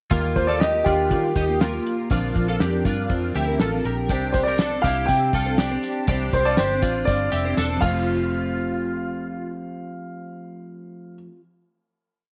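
Jangly indie pop with a breezy, youthful mood, moving at 121 BPM in a straight 4/4 in F major, built as a short pre-chorus that lands on a final hit at 8.1 seconds. A dark, woody upright piano carries the motif-based melody up front, its call phrases touched by slapback echo, with audible action noise and long sustain. Beneath it, a twelve-string electric guitar rings out a bright, twangy picked figure doubled in thirds, treated with ensemble chorus and slapback echo, while a full-bodied jumbo steel-string acoustic drives the strumming in open chord shapes. A foam-muted vintage electric bass plays a round, melodic line with slides, and a cloth-damped, thuddy drum kit keeps a brisk indie backbeat with a fat snare, tight kick and dark cymbals, closing its part with a fill from 7.6 seconds. A jingly, band-limited tambourine sits in the background on the backbeat, and the mix has light reverb and small room ambience as the chords move from Ebadd9 through Bbadd9 and Csus2 to a resolving Fadd9.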